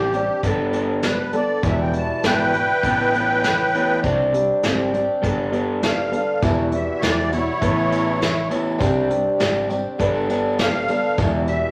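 A reedy musette accordion opens this 11.7-second excerpt of folk rock and heartland rock, carrying the melody up front with a close, dry, full tone that shimmers from its musette tuning. Beneath it, a picked twelve-string acoustic guitar picks out a dark, boxy, octave-doubled accompaniment, while an electric guitar through a small old amp plays a slightly broken-up riff and a round, hollow-body electric bass holds down the low end. A soft brush drum kit enters at 0.1 seconds, distant and roomy with a punchy kick and medium-tuned snare, setting a straight 100 BPM pulse in 4/4. At 6.4 seconds a very quiet, mellow grand piano and a jingly tambourine in the background join in, filling out the open-road, jangly mood. The chords cycle through Gadd9, Emadd9, Aadd9 and Csus2 in G major, and the whole mix sits in a large studio reverb with a layer of vinyl crackle.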